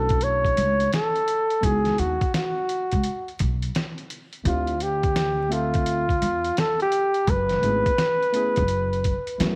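This short jazz-hop clip, cut from a longer hip hop piece, opens with a breathy flugelhorn playing a jazz-style solo melody up front, with light vibrato and scooped notes. A worn, slightly out-of-tune tine electric piano accompanies it, sounding clean through its built-in speakers, while a woody, growly pizzicato upright bass on steel strings holds down the low end. At 0.1 seconds a lo-fi sampler-style drum kit joins, compressed, pitched down and muffled, with a thumpy kick, a medium-tuned snare and hi-hat, re-recorded in a large room and placed up front. The harmony moves through rich minor eleventh chords, from Bm11 to C#m11, Dm11 and F#m11, over a swung 4/4 groove. Vinyl crackle, light reverb and digital ambience give the whole recording a mellow, nocturnal haze.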